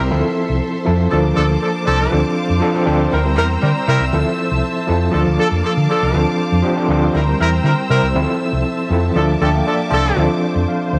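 Disco at a steady dance pulse, this short, sultry passage cut from a longer piece moves through a looping cycle of lush seventh chords. Up front, a gritty, overdriven reed electric piano carries the accompaniment through a combo amp with a fast tremolo, then slips in a brief fill at 9.2 seconds. A round, dark hollow-body electric bass, fingered and amped, anchors the low end just as prominently. Warm horn stabs with light vibrato and a smooth top punctuate the groove until 10.2 seconds. Behind them, a clear, focused string section sits distant in the mix, bowing sustained chords with vibrato, and an echo-chamber reverb adds small-room ambience.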